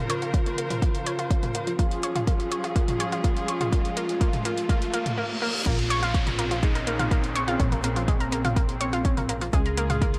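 Dark and melancholic, this melodic techno passage, cut from a longer piece, moves at 124 BPM in Bb minor over a chord cycle of Bbmadd9 and Db. A fat, detuned sawtooth lead with a sub octave and vibrato carries the mellow melody, while a round, nasal analog pluck spins bright, chorused arpeggios, both treated with tape echo and filter sweeps through the opening build-up. Alongside them, a distant studio string section holds soft-attack bowed chords with vibrato and portamento, and a punchy, layered electronic kick sits up front, joined by a techno drum kit with metallic hats, crash and toms that sounds re-recorded in a small room. Background risers and a reverse cymbal lead into the drop at 5.7 seconds, with a downlifter also sitting in the background, and at the drop a plucky, funky analog bass with tube saturation enters. The lead, pluck, strings and bass all pump against the kick, and light reverb gives the mix a sense of space.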